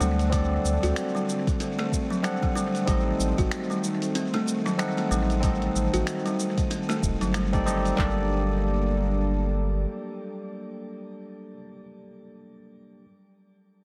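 A buzzing, woody kalimba plays bright, short arpeggios through analog delay and shimmer reverb in this mystical, hypnotic organic downtempo fragment, over a deep, round sine sub bass up front, a barky, clean tine electric piano through a combo amp with dub echo and sidechain pumping, a smooth, warbling, detuned vintage pad with subtle chorus in the background, a soft-kick electronic kit with handclaps entering at 0.3 s, and a gritty sampler-style kit of cabasa, finger snaps and hi-hat in dub echo that stops at 8.0 s as the echo-heavy mix moves into a new section.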